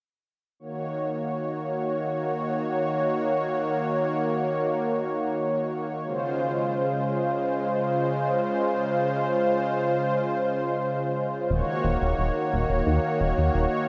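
A lush, nasal unison pad of detuned sawtooth voices sits up front, holding soft-attack, chorus-thickened chords that move from Ebm7 to Dbmaj7 in this cinematic, nocturnal synthwave fragment, until a dark, glossy chorused synth bass with a fast filter pluck and tube saturation joins at 11.5 s, the whole set in a wet plate reverb and bright 1980s-style digital production.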